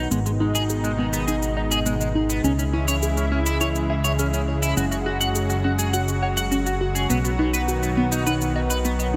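Moody and nocturnal, this synthwave passage, cut from a longer piece, sets a lush, detuned unison pad of sustained chords up front under a filter sweep, with dark, soft round pluck arpeggios sitting in the background through chorus and digital delay, a clean, picked semi-hollow electric guitar riff run through analog chorus, a low-pass filter and delay, a fat sawtooth analog bass, and a tape-warm electronic shaker, over chords moving through G#m, C#m, F#sus2 and B in a bright 1980s-style digital production with moderate plate reverb.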